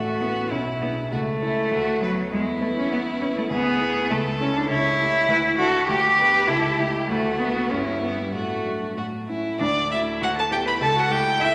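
A close, vibrato-rich violin carries the melody up front in this cheerful, graceful classical-period movement for piano trio, moving at a quick 100 BPM in 2/4 with a rubato feel. A focused bowed cello sings a second line beneath it, while a warm grand piano supplies long-sustained accompaniment. The music starts in A major and shifts to D major at 4.7 s, and the trio sits in the wet reverb of a scoring stage in this passage cut from a longer piece.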